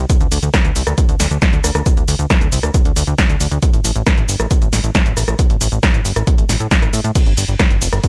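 A plucky, funky sawtooth-and-square bass opens this soaring, driving uplifting trance excerpt at 136 BPM, its fast-attack filter pluck decaying and pumping against the sidechain between F1 and A2. From 0.1 seconds an analog electronic kick with a small-room character joins a punchy, up-front drum machine kit of snare, rim click, hi-hat, shaker, ride and crash cymbals. The mix stays dry and close throughout the 8-second cut.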